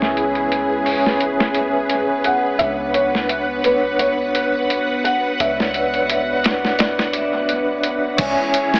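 Brooding and hypnotic, this short trip hop excerpt moves at 86 BPM in 4/4 with a light sixteenth-note swing, circling between C#m and Bmadd9/C#. A boom bap sampler-style kit sits up front, pitched down and compressed, its thumpy kick and high-tuned snare dulled by low-pass filtering, roughened by 12-bit grit and trailed by dub echo. A soft, round 808-style bass adds a deep, dark sine tone that stops at 8.4 seconds. A metallic, ringing vibraphone with fast motor vibrato and tremolo carries the accompaniment alongside a string machine cello pad, full and vintage with slow-attack sawtooth chords, ensemble chorus and sampler grit. At 2.2 seconds a felt-muted upright piano enters with an intimate, thickly damped melody, its action noise audible beneath the dub echo. A wet spring reverb and an AM radio tone make the whole mix feel hazy and distant.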